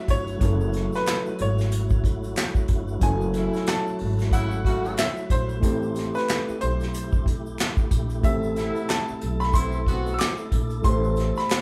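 R&B and neo-soul with an introspective, late-night mood, this short excerpt from a longer piece moves at an easy swung pace over F#m9 and Am9 chords, with a bright, brilliant baby grand carrying the melody above a gritty, reedy electric piano through a combo amp and a full tonewheel organ holding chords through slow rotary speaker, light overdrive and chorus vibrato. Underneath, a woody, dark pizzicato upright bass and a punchy, airy acoustic kit played with bundle sticks sit up front, with handclaps, hi-hat and snare, while a very quiet, dry tube shaker and finger snaps join at 0.3 seconds. A clear, soft-attacked jazz horn section adds stabs with light vibrato from 3.3 to 10.4 seconds, and the whole band sounds like it is playing live in one large studio room with moderate reverb.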